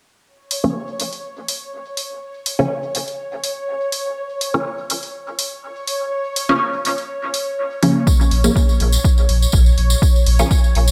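A moderate digital room reverb gives this meditative, cavernous dub techno excerpt its spacious ambience. A muted, detuned chord stab runs through a filter sweep with phaser, pumping and dub echo. Beneath it sit an electronic hi-hat and a bubbling, resonant texture of random filter steps with chorus and built-in reverb. At 8.1 seconds a punchy kick and a jingly, close tambourine arrive, followed at 8.3 seconds by a deep, round sub bass.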